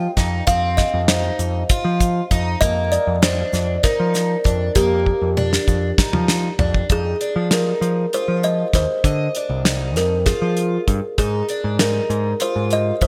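A woody, ringing kalimba melody opens this tense, intricate progressive instrumental in 7/8, over shimmering, octave-doubled arpeggios from a picked twelve-string acoustic guitar with lush chorus and an up-front, overdriven picked electric bass. A damped 70s drum kit with a fat snare, tight kick and gated reverb joins at 0.2 seconds, a very quiet, grainy tube shaker adds texture until 6.6 seconds, and a drum fill leads into a new section at 6.9 seconds. The kalimba carries digital delay within a bright 1980s-style digital production, and the clip is cut from a longer piece.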